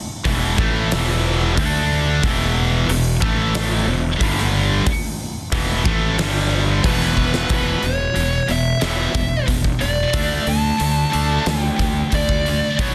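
A dense, heavily limited modern master with a small room reverb frames this heavy, menacing hard rock excerpt at 91 BPM in E minor, where two bright, picked distorted guitars, one of them high-gain, drive riffs over E5, D5, G5 and A5 chords. A growly, fuzz-laden fingered bass sits up front beside a huge arena drum kit with a fat snare and punchy kick. At 6.9 seconds a smooth, dark overdriven lead guitar enters up front with digital delay to carry the melody, and a drum fill at 7.2 seconds leads into the next section.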